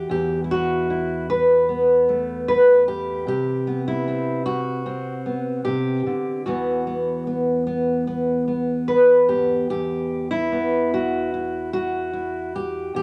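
A fingerpicked steel-string acoustic guitar carries this short folk piece alone, its woody, dark tone colored by old strings and placed up front in the mix. The mood is reflective and wistful, and the playing moves with a rubato feel in 4/4 rather than a strict pulse. The guitar spans from E2 up to B4, settling on Esus2 at the start, shifting to C5 at 3.3 seconds, and returning to Esus2 at 6.5 seconds. A moderate large-studio reverb gives the instrument a sense of space around its close, intimate sound. Cut from a longer piece, the 13-second passage states its opening idea and begins to repeat it at 9.7 seconds.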